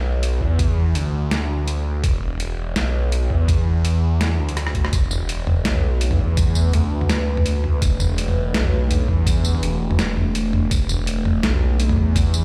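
Cinematic and heavy, this half-time drum and bass excerpt at 166 BPM in E minor sets a swirling, thick phased saw bass up front against a gritty, pitched-down sampler-style kit with a medium-tuned snare, tambourine, toms and a thumpy electronic kick, with a brief drum fill at 4.6 seconds before a deep, moody ambient pad with chorus and sidechain pumping enters at 6.1 seconds, all carried in a big, reverberant room sound.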